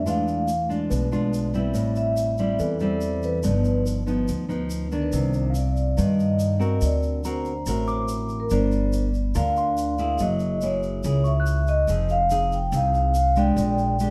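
Bossa nova in a smooth, wistful mood, this passage is cut from a longer piece and moves in a straight 4/4. A vibraphone played with soft mallets carries the melody, its ringing, metallic tone shaded by a slow motor vibrato and a vintage, band-limited character. Up front, a fingerpicked nylon-string guitar with a classical touch and a woody pizzicato upright bass on steel strings support it, while a clean tine electric piano sits in the background through its built-in speakers until it drops out at 12.0 s. A grainy tube shaker adds texture with a live-room feel. The harmony drifts through rich extended chords such as E7b9, Cm9 and F#9, with the second section beginning at 5.1 s and the progression reaching Bb6 at 13.6 s. Light reverb and a dark, warm production round out the sound.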